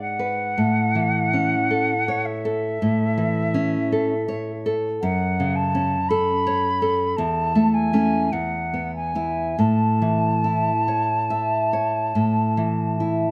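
Flute and fingerpicked classical guitar open together in this serene, romantic fragment in A major, drifting in a slow, rubato 4/4 at 46-56 BPM, as the airy, expressive flute sings a tongued, vibrato-shaded melody from a distant placement over up-front nylon-string accompaniment with warm fresh strings, moving from a G#dim pickup through A, F#m and E back home to A, all caught by close, detailed microphones with light reverb and a warm glow.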